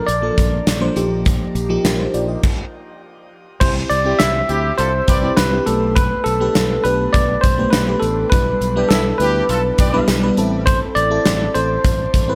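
A straight 4/4 groove at 102 BPM drives this glossy, nostalgic 1980s-style pop excerpt, built on an up-front gated drum kit with a punchy kick, medium-tuned snare and bright cymbals in an airy big room, a fingered electric bass, and a very quiet, jingly tambourine. A bell-like, barky tine electric piano carries the melody over a lush, dreamy FM electric piano with a soft pad layer treated with chorus, phaser and shimmer reverb, and after a stop from 2.4 to 3.6 seconds the music settles into C major. At 4.1 seconds a clear, tight horn section adds smooth pop stabs with tape echo, set in a moderate echo-chamber reverb.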